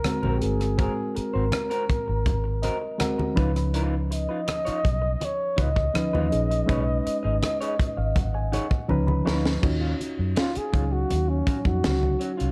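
A breathy, close-miked flugelhorn with vibrato and scooped notes carries the melody and takes a solo from 9.6 s in this smooth, silky excerpt of lush 1970s-style soul at 81 BPM in Eb minor, over a reedy, slightly out-of-tune electric piano that adds fills, a slightly broken-up lo-fi guitar riff, a tight funk drum kit with a high-tuned snare and a fill at 8.9 s, bright low-tuned congas in the background, and a round, punchy foam-muted fingered bass entering at 0.3 s, set in a dark, warm production with light small-room reverb.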